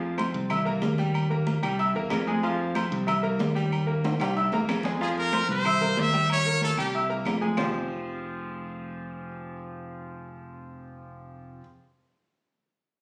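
Driving, danceable salsa at 187 BPM in F harmonic minor, cut from a longer piece, where a clear, intimate concert grand piano with audible action noise and a growly, punchy fingered electric bass play up front throughout, woody claves and soft-handed vintage congas sit in the background beside ringing timbales and agogo bells, a drum fill arrives at 4.0 seconds, a bright, close-miked trumpet solo with light vibrato enters at 5.0 seconds, the percussion stops near 7.7 seconds, and the whole is heard through moderate studio reverb as if captured on a phone in the room.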